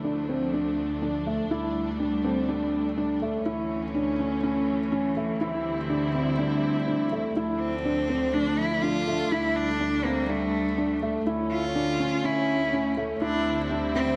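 Electronica with a cinematic, hypnotic mood, cut from a longer piece: a felt-muted upright piano sits up front with a soft, intimate riff through low-pass filtering and tape echo, while a dark chamber string section holds smooth sustained chords, a studio cello section bows a floating, pure bass note beneath, and at 7.6 seconds a single rich, focused cello enters with a vibrato melody, all set in a moderate concert-hall reverb as the harmony cycles over a held D.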